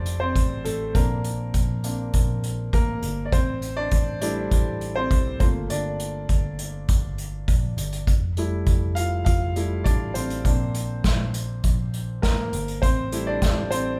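A straight, steady 4/4 pulse carries this short, warm, anthemic slice of piano-driven pop, cut from a longer piece. An upright piano takes the lead as a solo voice for the full 14 seconds, its clear, woody and smooth tone carrying a vintage character and long sustain as it sits up front in the mix. Beneath it, a foam-muted, picked electric bass gives a dark, round, amped low end, staying in a low register. An acoustic kit played with bundle sticks adds a punchy kick, a medium-tuned snare and hi-hat, also placed up front. The harmony moves through Fmaj7, Bbadd9, C69/A and Gm7 before returning to Fmaj7 and Bbadd9 and settling on Am7, all captured as a band playing live together in one studio room with light reverb.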